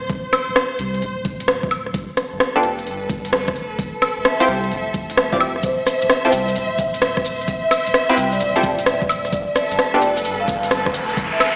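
The rhythm skips along in a swung two-step garage groove, with a knocking electronic kick and an overdriven garage kit of metallic hi-hats, rim clicks and woodblock sitting up front. A deep, thick sub bass with tube saturation holds the low end, while a clear, focused studio string section bows a vibrato-laden texture that pumps against the sidechain. From 2.6 seconds, punchy, detuned chord stabs built from sawtooth and square waves cut through brightly, treated with chorus and tape echo as the harmony moves through sus2, ninth and eleventh chords. At 5.6 seconds a mellow vibraphone played with soft mallets enters with a ringing melody carrying its own tape echo, joined by grainy, close maracas. The mood is bouncy, with a riser in the background arriving near the close of this cut from a longer piece, and the mix sounds as if played on a big sound system in a bare stone room, with a small-speaker character.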